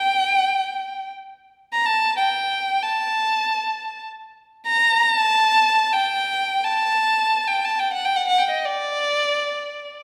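A reverberant recital hall surrounds this short cut from a longer piece, its long, wet tail giving the sound the resonance of a church or concert hall. The music belongs to the Arabic maqam ensemble tradition and moves in free time, with a melancholic, hypnotic mood. A single bowed violin carries the solo line from the start to 9.9 seconds, sitting up front in the mix. Its tone is rich and expressive, shaped by vibrato, soft attacks and gliding portamento between notes. The melody stays in a fairly high register, ranging from D5 to Bb5, and its phrases float through the hall's lingering echo.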